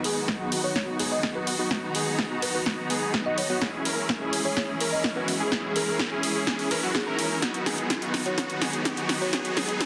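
Festival progressive house at 126 BPM in B major, this uplifting, anthemic build-up moves from B to C#m and back while a drum fill runs throughout, with punchy snare and hats up front and a layered electronic kick entering at 0.3 s in the background. Huge, lush supersaw chords carry a bright riff through a filter sweep, while a thick detuned unison lead plays arpeggios under its own sweep and a woody marimba melody enters at 0.6 s. Smooth bowed strings sustain chords and pump with the sidechain alongside the synths, a very quiet riser hovers beneath, and a long ambient reverb and dense, heavily limited master fill out the sound.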